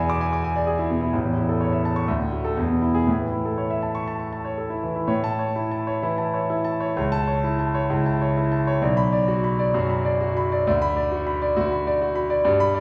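Heard from further back in a reverberant recital hall with a touch of small-room ambience, a clear concert grand piano sits up front, its deep bass and long sustain ringing naturally from low A1 up to D6. This heroic, brilliant virtuoso study in A major moves with a rubato feel in 4/4 at roughly 117-136 BPM, opening on an E7 chord before settling into A, D and E harmonies. A new passage begins at 5.1 seconds, drifting through A/C# and B minor colours until the fragment breaks off at 12.8 seconds.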